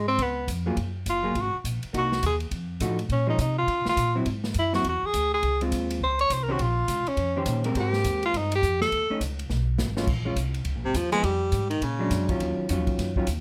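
A warm tenor saxophone leads this brisk, swinging small-group jazz excerpt in Bb minor at 206 BPM, its smooth-topped, lightly vibratoed solo sitting up front until 10.1 seconds, when a drum fill hands off to a clear baritone saxophone. The baritone plays with vibrato and scooped notes in a brief, smooth solo that begins at 10.8 seconds. Underneath, a dark, clean, picked hollow-body electric guitar comps up front through rich changes such as Gbmaj9, F7b9 and Eb13, while a pizzicato upright bass on gut strings gives a woody, thumpy pulse. The acoustic drum kit sounds airy and polished, with dark cymbals, a medium-tuned snare and a boomy kick. A moderate club reverb wraps the group in a cool, intimate atmosphere.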